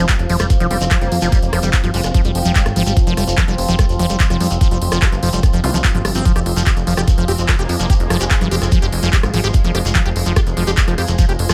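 An alien, driving psychedelic trance excerpt opens with a punchy, funky analog bass pluck up front, a squelchy, resonant acid riff run through phaser and delay, and a detuned drone of sustained chords with moving overtones, all under a mellow, ethereal pad, the pumping sidechain breathing through the drone, acid line and pad. A knocking electronic kick sits forward from 0.1 seconds alongside an overdriven kit of bright hats, handclaps and rim clicks, with a grainy shekere in the background. A metallic, wobbling FM bass line with tape echo surfaces faintly at 0.7 seconds and again at 7.3 seconds, and a very quiet electronic zap flicks past at 5.6 seconds in the dry mix.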